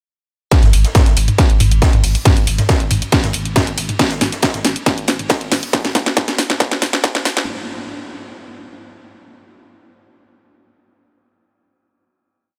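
Driving peak-time techno with an intense, dark mood, built as a single build-up with a drum fill and filter sweep running from 0.5 to 7.5 seconds. An overdriven, distorted electronic kick pounds four-on-the-floor up front alongside a cracking techno kit of programmed hats, mid tom and backbeat snare, while a thick, saturated sine sub bass rumbles between the kicks with sidechain pumping until 5.6 seconds. Deep in the background, a looped acoustic big-band kit breakbeat with edits adds a natural studio-room snare and high-passed, pumping hats and ride, all set in a light small-room reverb.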